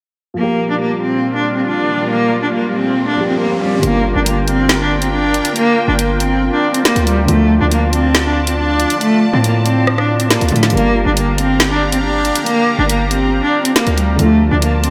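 Ominous and tense, this half-time drill excerpt at 139 BPM in G minor opens with a dark, boxy grand piano, an airy, detuned sawtooth pad with a filter swell, and a bowed solo cello carrying a focused, vibrato-laden melody through tape echo, while a background riser builds until 3.8 seconds, when a heavy, saturated 808-style bass and an up-front drum kit with woody snare, rim clicks and hi-hats arrive beneath a dreamy, reverb-soaked hall moving between Gm7 and Dm.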